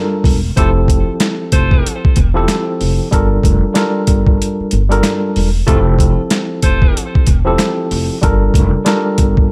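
A worn, slightly out-of-tune tine electric piano opens this moody, gritty boom-bap hip-hop excerpt in G dorian, lightly overdriven with a tape-soaked haze and sitting up front as it plays over changes between Gm7 and Fmaj7. A woody, pizzicato upright bass on gut strings and a compressed, pitched-down sampler-style drum kit join almost at once, setting a swung 94 BPM groove in 4/4 with a thumpy kick, a medium-tuned snare and hi-hat. From 0.6 seconds, an edgy, close-miked saxophone section adds jazz-style stabs with vibrato, filtered and trailed by digital delay, placed lower in the mix until 7.1 seconds. Very quiet, saturated finger snaps with a short room sound add a human touch in the background. A brief break arrives at 4.4 seconds, and the track has a studio reverb.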